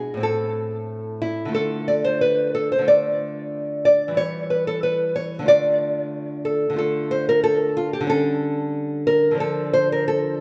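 A fingerpicked nylon-string guitar plays alone from the start, sitting small and up front in a baroque-style classical dance with a solemn, grave mood and a freely rubato feel in 4/4. Its acoustic tone carries tape echo and sits in a wet recital hall reverb, while the harmony moves from Am to Dm and through Em6 and A7/D before settling on Dm at 9.4 seconds. The fragment is cut from a longer piece and ends at 10.4 seconds.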